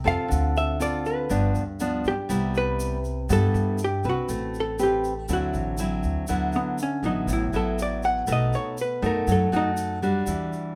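A dark, clean hollow-body electric guitar carries the melody up front in this sophisticated, relaxed bossa nova clip, its picked lines evened out by compression, and it steps forward into a solo when the second section arrives at 6.3 seconds. Beneath it, a classical nylon-string guitar fingerpicks the accompaniment just as prominently, its fresh strings sounding bright, with the occasional finger squeak. An upright bass played pizzicato on gut strings adds a woody, thumpy low end. An egg shaker sits far back, grainy and bright with a live-room sound. The harmony moves through jazzy seventh and ninth chords, and light reverb gives the clip a gentle sense of space.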